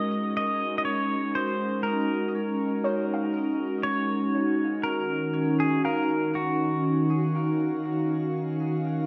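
Ambient excerpt at 60 BPM, serene and luminous, where a clean, up-front pedal steel guitar sings a slide melody through tape echo over a glassy, ethereal FM pad of slow-attack sustained chords with ensemble chorus, moving from Ab7sus4 to Ebm9 at 4.8 seconds, while a soft, round, dark pluck adds background arpeggios with lush chorus and tape echo from 2.8 to 8.5 seconds, all set in a wet scoring-stage reverb.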